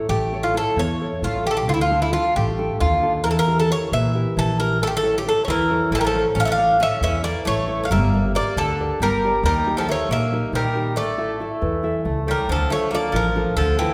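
A mellow, up-front Greek bouzouki carries the melody in this tense, driving Greek folk excerpt, set in 7/8 at 272 BPM and speeding up throughout, over chords moving through A, Dm, Edim, Gm and Eb. Fingerpicked nylon-string guitar with audible finger squeak supplies classical-style accompaniment, while a growly, woody upright bass played pizzicato sits close and thumpy underneath. At 5.5 seconds a second, brighter bouzouki joins with a lower line, and the whole band rings in the reverberant space of a recital hall.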